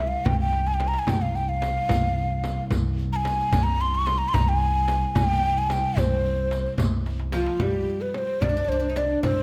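Melancholic and longing, this excerpt of an Arabic maqam ensemble in C hijaz moves at 74 BPM in a straight 6/8, with a breathy, hollow ney carrying the melody up front over a dark, thumpy pizzicato upright bass, a distant bowed double bass drone, a crisp metal-shell darbuka, a small bright frame drum and a soft riq with dark jingles in the background, before a woody, fretless oud enters on a second line at 7.3 s, all set in a moderate recital hall reverb.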